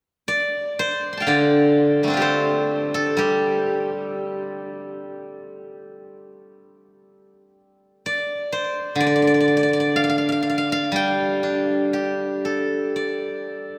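A steel-string zither, plucked with fingerpicks, carries this short fragment of Chinese traditional music on its own, entering at 0.3 s and sounding until 13.8 s. Its acoustic tone is silvery and ringing, placed up front, with a slapback echo trailing each note. The playing moves in free, rubato time over a loose 4/4 pulse, giving the solo an elegant, serene character. A deep cathedral reverb surrounds the instrument, so the notes hang in a vast, echoing space long after they are struck. Cut from a longer piece, the passage unfolds as a single unhurried section of calm contemplation.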